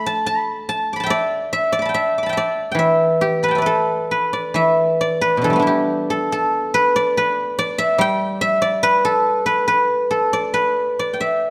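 A solo guzheng, plucked with fingerpicks and sitting up front, rings out with a silvery tone across its range in this elegant, longing piece of Chinese traditional music. The playing moves in a free, rubato 2/4 with uneven beats, shifting into a new section at 4.5 seconds before the excerpt ends at 11.5 seconds. Light reverb surrounds the dark, warm production, and a faint mains hum lingers underneath.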